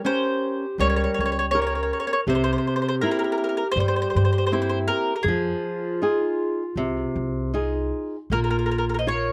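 A round, double-strung mandolin carries the melody up front with a slapback echo in this passionate, wistful Italian folk serenade, moving with a gently swung, rubato lilt through diminished, dominant and minor-seventh harmony. A boxy, fingerpicked flamenco guitar accompanies while a present, classical-style clarinet sings a second line, and a woody pizzicato upright bass joins at 0.8 seconds. The dry outdoor sound keeps every part close before the fragment turns to a new section at 8.3 seconds.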